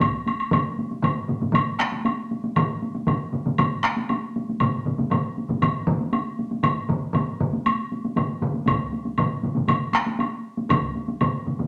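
Saturated, compressed solo taiko drums sit up front in a wet studio reverb, driving a ceremonial, powerful Japanese traditional taiko ensemble piece at 118 BPM in straight 4/4, with heavy-stick ensemble drums, close and dry in one part and in a small room in another, a woody woodblock playing until 11.3 seconds, and a further ensemble part sounding briefly at the very start and again from 8.7 to 10.8 seconds in this brief cut from a longer performance.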